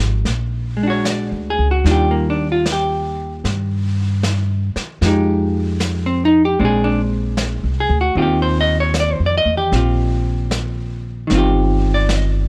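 A dark, clean hollow-body electric jazz guitar sits up front in this excerpt from a tender, late-night jazz ballad, its picked chords spanning Eb3 to Eb5 as accompaniment. It moves at 76 BPM in 4/4 with a swung eighth-note feel, in Eb major tuned to A4 = 441 Hz. Sounding from 0.0 seconds alongside the guitar, a woody, thumpy pizzicato upright bass with steel strings also sits up front, ranging from G1 to G2. At 0.3 seconds a vintage brush drum kit enters further back, its brushed snare, medium-tuned snare and hi-hat heard in a studio room with a rolled-off top. The harmony moves through Bb7alt, Ebmaj9, Fm9, Bb9 and Eb69. The whole production is dry and dusky, with the drums carrying a gentle warmth.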